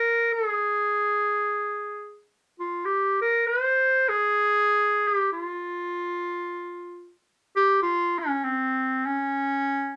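Floating in free time, this relaxed, languid Hawaiian excerpt features a lone clarinet playing solo from start to finish, its bright, present tone placed up front and shaped in a classical style. The line moves between C4 and C5, settling into a new passage at 2.8 seconds, while a moderate studio ambience lends the sound a touch of room.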